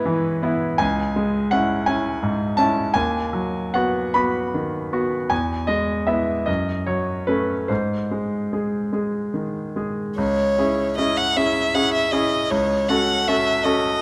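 In a rubato 6/8 lilt at 47-57 BPM in dotted quarters, this elegiac, melancholic romantic duo in C# minor opens with a bright, brilliant concert grand piano accompanying alone, deep in the bass, through chords moving from E/G# and C#m to a G# chord, until a clear, smooth violin with vibrato enters up front at 10.2 seconds to carry the melody over C#m and F#m/C#, all set in a moderate scoring-stage reverb in this fragment of a longer piece.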